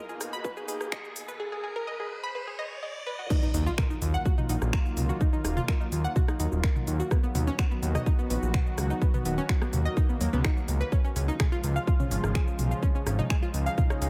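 A light reverb with a trimmed low end frames this dark, melancholic melodic techno excerpt in Eb minor, moving at 126 BPM in a straight 4/4. It opens with a build-up where an electronic riser climbs over a lush, detuned unison pad and a warm, round analog pluck spinning arpeggios through chorus and analog delay, both breathing with sidechain pumping. A very quiet, string-like drone, tense and bright with vibrato, hovers beneath only until 1.4 s, while a punchy, up-front electronic kick and a house kit of crisp hats, finger snaps, rim clicks, shaker, toms and crash cymbal drive the groove. The drop lands at 3.3 s with an impact, and moments later, at 3.5 s, a fat, detuned sawtooth bass enters, thick and pumping, its filter sweeping as it anchors the low end. Harmony moves from Abmadd9 to Ebmadd9, then B and Db, keeping the mood brooding as the pad and pluck carry on to the end.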